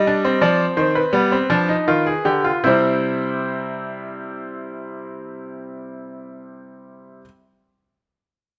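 A classical, baroque-style three-part fugue for solo grand piano, this serious, solemn fragment of a longer piece moves at 76-89 BPM in straight 4/4, slowing down over its first 2.6 seconds as the harmony passes from Cm/G through G7 to C, with the brilliant, intimate piano sitting up front with audible action noise and long sustain inside a moderate stone-room reverb.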